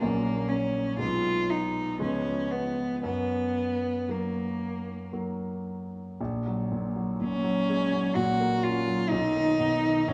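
A bowed cello with a rich, focused tone and expressive vibrato sings a tender, lyrical melody over clear grand piano accompaniment with a deep bass, both heard up front from the first moment of this romantic classical excerpt. The duo moves in a slow, rubato 3/4 at around 55-64 BPM in F# major, and the cello's smooth top floats above the piano's harmonies. A moderate concert hall reverb surrounds the pair, and a new section begins at 6.2 seconds before the passage breaks off at 10.1 seconds.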